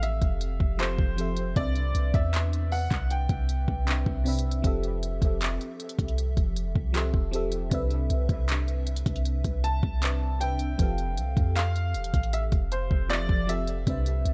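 Contemporary R&B at 78 BPM in F lydian, romantic and dreamy, where a clear, worn baby grand piano carries the melody from 0.0 to 4.2 seconds and returns at 9.6 seconds with long sustain and dub echo, over a lush FM electric piano with a soft pad layer treated with chorus, phaser and dub echo, a deep, boomy 808-style sine bass and an up-front electronic drum kit of soft kick, smooth hi-hat and handclaps carrying vintage 12-bit sampler grit, all cycling between Fmaj9 and Cmaj9 in an echo-heavy digital ambience, in a section cut from a longer piece.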